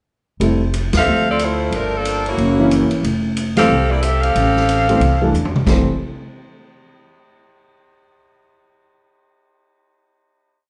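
An edgy saxophone section carries the motif-based melody in four-part block harmony from 1.0 s, close-miked with light vibrato and a slapback echo, over a joyful, energetic big band swing at 182 BPM in F major, with band accents at 0.9 and 3.5 s. Beneath it a woody pizzicato upright bass plays up front in a two-feel, an intimate baby grand piano comps with syncopated rootless voicings and audible action noise, and a distant, roomy drum kit keeps a ride cymbal pattern with dark cymbals and a boomy kick before a drum fill at 5.3 s leads to the final chord at 5.7 s. The short piece moves through Fmaj9, Dm11, Gm9 and Gb7 back to Fmaj9, heard as a live gig through the venue's PA with club reverb and a dulled top end.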